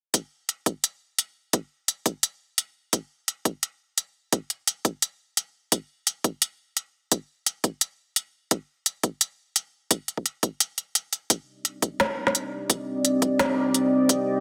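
A moderate, lush hall reverb surrounds this tense, cinematic half-time drum and bass excerpt, with the drums placed up front. An electronic kick, hard-clipped and trimmed by a high-pass filter, runs from 0.1 s alongside an organic electronic kit whose woody snare and crisp hi-hats carry a tape-warm grain from being re-recorded in a small room. The sixteenths sit on a light swing, giving the half-time groove a slight looseness. At 12.2 s a deep, moody ambient pad slowly fades in, built from detuned sawtooth and sine unison layers with a sub octave, softened by chorus and its own reverb and breathing with a sidechain pump. Its mellow, sustained Cmadd9 colour lingers briefly after the drums stop at 14.2 s.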